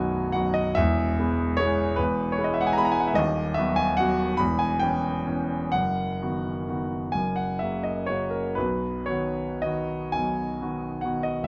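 A warm, polished grand piano plays alone and up front in this dreamy, serene romantic nocturne in B major, an excerpt cut from a longer piece. The pulse moves slowly in 6/8, between 36 and 52 BPM counted in dotted quarters, and the rubato feel lets time stretch and breathe. The piano ranges from B0 up to B5, and its harmony drifts from B5 through E, B/D#, C#m7b5/E and B/F# to F# before settling on B at 8.6 seconds. Close, detailed miking keeps the instrument present and intimate, while light reverb adds a gentle halo around it. The whole passage lasts 11.5 seconds.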